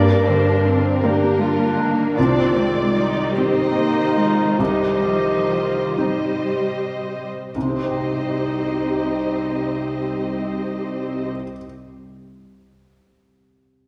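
A dark, smooth-topped solo clarinet stands out in this sorrowful, bittersweet cinematic passage, cut from a longer orchestral score and played with a rubato sway in 6/8. A lush violin section, distant and expressive with vibrato and portamento, shares that second line, while a viola section and a felt-muted upright piano, mellow and intimate with its action noise audible, supply the accompaniment. A ringing concert harp adds fingerpicked arpeggios, and a rich cello section holds the bass as the harmony moves from G minor to C minor. The music slows between 1.0 and 7.5 seconds, and once the other parts fall away, the piano continues alone until 13.9 seconds. The orchestra is heard from further back in a wet concert hall with a reverb tail of about 1.9 seconds.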